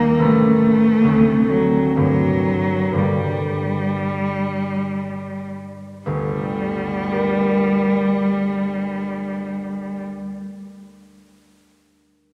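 Romantic classical duo in a solemn, elegiac mood, this brief excerpt sets a rich, focused bowed cello with vibrato singing the melody up front, heard close, over a mellow, ringing fingerpicked concert harp accompaniment, both in a wet church reverb as the rubato opening slows through its first 6.1 seconds before the cello stops at 10.0 seconds and the harp lingers to 11.1 seconds.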